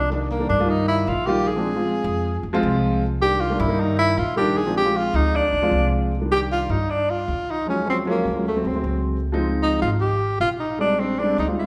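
Jazz in C minor at 154 BPM, fiery yet sultry, this fragment of a longer piece opens with a whispered, subtone tenor saxophone solo full of scooped notes and vibrato up front over growly, woody pizzicato upright bass and a mellow upright piano with audible action noise, moving from a Cm7–Bb7 vamp into richer changes like Ebm11, D7#11 and Dbmaj9 after 6.1 seconds, all bathed in the wet reverb of a recital hall.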